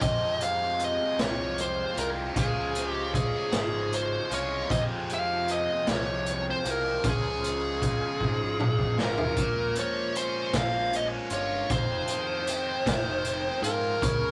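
A dark, compressed fuzz lead guitar carries the melody up front with tape echo in this hypnotic, trippy psychedelic rock excerpt in F minor, moving in a slow 6/8 at 51 BPM (dotted quarters) over chords that alternate Fmadd9 and Db before shifting to Bbm7 and Fm7 at 9.4 s. Beneath it, a bright, double-tracked overdriven guitar plays a phaser-tinged riff, a punchy fuzz bass holds the low end, and a very quiet, buzzy vintage combo organ sustains chords. The gritty, saturated garage drum kit, with its boomy kick and rolled-off top, plays a fill from 8.2 s, and soft-handed, low-tuned congas are barely audible from 14.0 s in the rough, small rehearsal-room sound.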